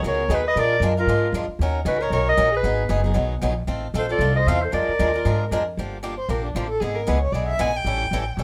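Light reverb surrounds this short excerpt of bittersweet, swinging jazz manouche at 230 BPM, where a bright, picked acoustic guitar and a woody, thumpy pizzicato upright bass on gut strings drive the accompaniment up front. A clear clarinet carries the jazz-style melody with vibrato and scooped notes until 5.5 seconds, while a nasal, bowed violin weaves a second line with expressive portamento. At 5.8 seconds, the violin takes over with a solo over the shifting minor and dominant seventh chords.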